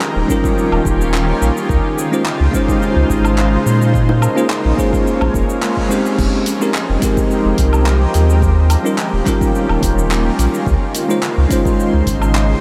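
A straight 4/4 groove at 107 BPM rides on a deep, tape-warm electronic kick drum and a deep house kit of hi-hat, handclaps, cabasa, woodblock and crash cymbal, re-recorded in a small room, setting a wistful, sunset chillout mood in F minor. Underneath, a round sine sub bass sits up front with a fast attack and sustained notes, while a shimmering, ethereal pad with slow attack, detuned unison layers, an octave-up granular sheen and chorus holds lush chords that drift through Eb9, Dbmaj9, Bbm9 and Fm11. A bell-like, clean tine electric piano carries the accompaniment with tape echo, and a fingerpicked concert harp rings out bright arpeggios in the background through a low-pass filter and tape echo until 8.6 seconds. Very quiet, low-tuned acoustic bongos surface briefly between 4.1 and 5.3 seconds. The whole mix is soaked in a huge, dreamy reverb, and this section is cut from a longer piece.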